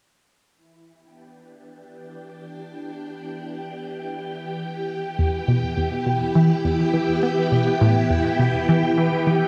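A swirling, vintage string machine fades in at 0.5 s with sustained, phased Em7 chords, joined at 2.2 s by an airy, breathy wind-like tuned noise texture and at 5.2 s by a round, detuned analog pluck riff with chorus and tape echo placed up front, in this expansive, hypnotic stretch of ambient, sequencer-driven space music at 103 BPM in E minor, steeped in a wet plate reverb and an echo-heavy cassette-tape sound.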